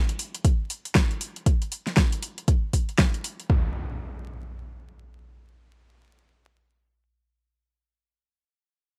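A layered, tape-warm drum kit of fat snare and metallic hi-hats opens this brief fragment of deep house at 118 BPM with swung 16ths and a deep, warm mood from 0.1 s, joined at 0.4 s by a deep, up-front electronic kick that anchors the groove until about 3.5 s, when a subdued electronic impact takes over, the whole heard in a dry mix beneath vinyl crackle.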